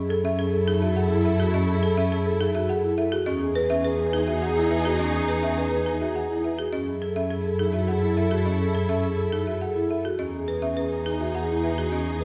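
Hypnotic and meditative, this excerpt of minimalist classical pattern music moves at 104 BPM in 3/4, with F# dorian harmony rocking between F#m9 and Emaj9. A mellow, ringing vibraphone plays arpeggios while a woody, hard-mallet folk marimba carries the bright, percussive melody from 0.1 seconds. A lush violin section holds smooth chords, and an expressive bowed double bass sits up front with portamento. The whole is heard from further back in a scoring stage reverb, with vinyl crackle.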